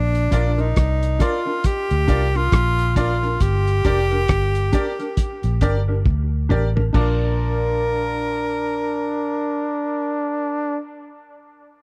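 A breathy tenor saxophone with light vibrato and dub echo carries the melody over a round, punchy muted electric bass, a cloth-damped, muffled drum kit, a dark, clean electric guitar with spring reverb, and brilliant piano stabs in this sunny, uplifting roots reggae excerpt at 68 BPM in Bb major, where a bright trombone enters with a second line at 6.9 seconds just as the drums finish a fill and drop out at 7.2 seconds, all captured in a dry, close 1970s-style studio sound.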